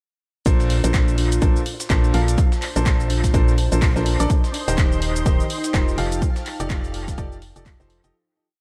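A dry, echo-heavy mix opens this short, feel-good piano house piece in Bb major at 125 BPM, its 16ths swung and its mood euphoric from the first beat at 0.5 seconds, when nearly every part arrives together in a drop. A clear, woody upright piano plays a rhythmic chord riff in close voicing, with audible action noise and analog delay, while a hollow, organ-like FM bass with a fast, decaying attack follows the chord rhythm, both pumping against the sidechain. Up front, a punchy electronic kick drives a four-on-the-floor pulse, joined by an analog drum machine's programmed handclaps, hats and shaker, and beneath them a very quiet, gritty, pitched-up breakbeat loop with edits adds sampler-style hi-hat and snare. A nostalgic, warbling tape-like pad with chorus, phaser and its own reverb drifts in the background from 1.7 seconds, and a silky, detuned analog string pad with ensemble chorus and vibrato adds bright sustained chords from 4.3 seconds. 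The harmony moves from Bbmaj9 to Eb6 and then F13 as the whole piece fades out from 5.6 seconds to its close.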